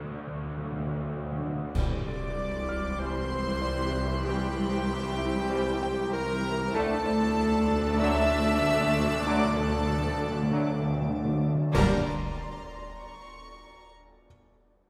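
Tense and ominous, this suspense film-score excerpt in G dorian at 96 BPM opens with soft-mallet timpani, a muted felt piano with audible action noise and a swarming, detuned drone, until at 1.7 seconds dark, up-front clash cymbals and concert bass drum mark the entrance of sul tasto symphonic strings, with double basses, cellos, violas and floating violins carrying a pure melody, while a clear clarinet and an intimate chamber violin section share a second line, mellow French horns and a vintage-tinged trombone section hold sustained chords, and a twinkling, sparkling granular texture shimmers in the background, all set in the lingering space of a scoring-stage reverb.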